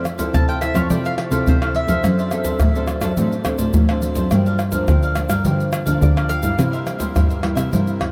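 Sunny and festive, this short cut of samba and choro at 106 BPM in F major moves through Fmaj7, D7/F#, Gm7 and C7 as a crisp picked cavaquinho and a full-bodied fingerpicked nylon-string guitar with analog chorus and audible finger squeak play beneath a dark, woody bowed cello played sul tasto with vibrato, while up-front, compressed and saturated egg shaker, pandeiro, tamborim and a tight surdo drive the groove and a picked double-string mandolin, trailed by diffuse ambient delay, sings its melody from 0.3 to 2.0 seconds and again at 6.0 seconds, all bathed in a huge, dreamy reverb.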